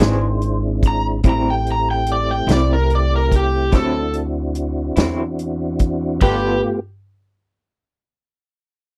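Soulful and laid-back, this short slow blues excerpt moves at 48 BPM in a straight 12/8, heard through a dry, close 1970s-style studio sound with little reverb. A soul drum kit with dark cymbals, a punchy kick and a rolled-off top sits up front beside a woody, growly pizzicato upright bass, both playing from the start. Two slightly broken-up, lo-fi electric guitars through a small old amp fill in underneath, one picked as a second line and the other fingered as accompaniment with tremolo, while a clear, clean tonewheel organ holds sustained chords with chorus vibrato and a stopped rotary speaker. At 0.9 seconds a bright, overdriven slide guitar takes the melody, fingered and up front with slapback echo. The harmony opens on Eaug7, settles on Am7 and moves to D9, arriving at G9 as a new section begins at 6.2 seconds, with the organ lingering to 6.8 seconds after the other parts stop.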